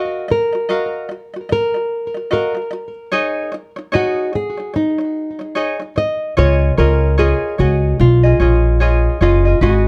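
A lilting 4/4 groove with a 60% swing on the sixteenths sets an easy-going, sunny mood in this acoustic pop excerpt, tuned slightly below standard pitch. A classical nylon-string guitar carries the melody with a warm, thumb-plucked tone, the odd finger squeak audible, and a touch of delay trailing its notes. Beneath it, a tenor ukulele fingerpicks a bright, light accompaniment in a similar register, both instruments sitting up front. At 6.4 seconds a pizzicato upright bass on steel strings arrives with a woody, prominent low end as the passage moves into its second section. The harmony drifts from D#madd9 to C#sus2, then settles on C#add9, all wrapped in light reverb and a dark production.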